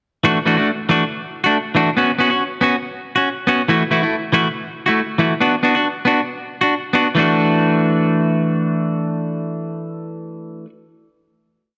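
A lightly swung 4/4 groove at 139 BPM drives this short, carefree highlife piece in D major. A single clean electric guitar carries it alone, strumming upper chord shapes with a bright, twangy, picked tone that sits up front and feels tightly compressed. The harmony moves through Dadd9, Bsus2, Esus24 and Bm, giving the groove an open, airy colour. At 7.1 seconds the strumming gives way to a final Dadd9 chord that rings out until about 10.6 seconds. A wet echo chamber reverb surrounds the guitar with a long, glowing tail, lending the sparse arrangement a sense of space.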